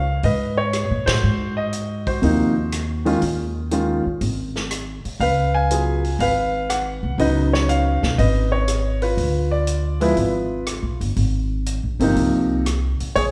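Jazz piano trio excerpt, swinging and sophisticated at 121 BPM in 4/4 with a firm swing on the eighths, where an up-front grand piano carries the melody over a woody, thumpy pizzicato upright bass, a vintage drum kit joins at 0.2 s with dark cymbals, punchy kick, hi-hat, ride, rim click and snare, the full band hits an accent at 1.0 s, and the harmony moves from Db13 through a brief chordless moment at 4.2 s to Ddim7 and an Ab69 close, all bathed in the lush reverb of a large hall.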